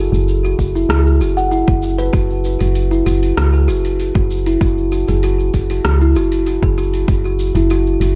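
A mellow, thumb-plucked kalimba and a round, woody FM bass open this meditative organic downtempo fragment, cut from a longer piece, together: the kalimba plays ringing arpeggios through a low-pass filter and digital delay while the bass sits up front beneath it with tube saturation and sidechain pumping. The harmony rests on C#m over F#, moving to F#5 at 2.1 seconds. A deep house kit of cabasa, metallic hi-hats and rim click, overdriven and re-recorded in a large room, sits low in the mix under a deep, overdriven electronic kick that enters at 0.6 seconds. The tempo is an unhurried 97 BPM in straight 4/4, tuned to A4 = 442 Hz. The dark, soft timbres of kalimba and bass give the passage its warm, close feel, with little reverb on the whole.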